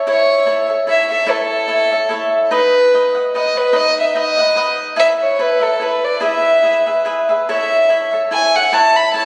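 Mexican folk mariachi in a romantic, festive mood at 146 BPM in a swung, rubato 3/4 in A major, this fragment features an up-front solo violin singing the melody with a soft attack and an airy, floating sul tasto tone over a crisp, bright picked cavaquinho that picks its way through A, B, Esus4, E and back to A, all heard as if captured on a phone in a room with a moderate concert hall reverb.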